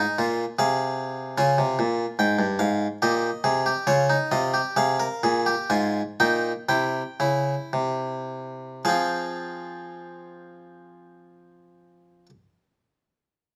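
Moving in a straight 4/4 that slows down over its first 8.9 seconds, this excerpt from a baroque-style three-part fugue in a driving yet contemplative classical mood sets a bright, plucked Flemish-style harpsichord with a single set of strings up front in a moderate stone room, the solo part ranging from G2 to Ab5 and falling silent at 12.3 seconds as the harmony passes from F minor through D-flat, a diminished chord and C before settling back on F minor.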